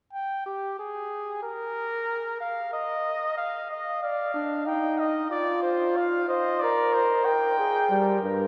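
In a straight, stately 3/4 at 93 BPM, this joyful classical canzona fragment for brass opens with a warm cornet carrying the melody from 0.1 seconds, played solo with light vibrato. The harmony turns to Dm at 3.4 seconds, and a mellow, smooth-topped flugelhorn takes up the imitative second line at 4.0 seconds as the chords pass through Eb, F5, Bb and Gm. A bright trombone with light vibrato adds a low accompaniment at 7.9 seconds. A long, wet cathedral reverb places the ensemble further back in a vast, resonant space.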